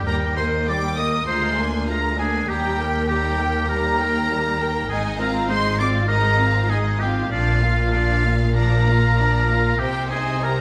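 A clear, up-front oboe carries a second line through this spirited, graceful classical-period fragment for symphony orchestra at 99 BPM in 4/4 with a rubato feel, alongside a focused violin section on the melody, a distant, expressive higher violin section on another second line, rich violas in accompaniment, and smooth cellos with even double basses on the bass, all moving from Eb toward Cm over about 10.6 seconds in the wet reverb of a scoring stage.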